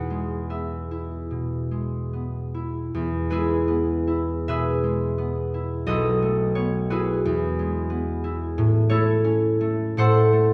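A dark recording sits in a reverberant recital hall, with a solo concert harp placed up front, its bright, ringing fingerpicked tone spanning B1 to G#5. This graceful, serene classical fragment, cut from a longer piece, unfolds with a free, rubato feel in 4/4. The harmony rests on E before turning to B7 at 5.9 s, back to E, then A, and finally shading into Am at 10.0 s as the 10.5-second passage ends.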